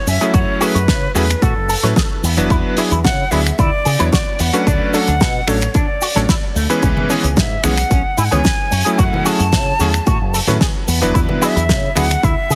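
An airy, vibrato-laden jazz flute carries the melody with dub echo over a sensual, cosmic nu-disco groove in F# minor at 111 BPM, where a barely audible downlifter opens the passage, a bright, twangy envelope-filtered electric guitar riff with analog chorus and a round, dark fingered bass drive the harmony, a clear electric grand piano pumps in the background, a dry, damped 70s drum kit with snaps, shaker and fat snare meets a punchy, overdriven electronic kick, and very quiet congas join at 7.0 s, all under a heavily compressed, radio-like sheen.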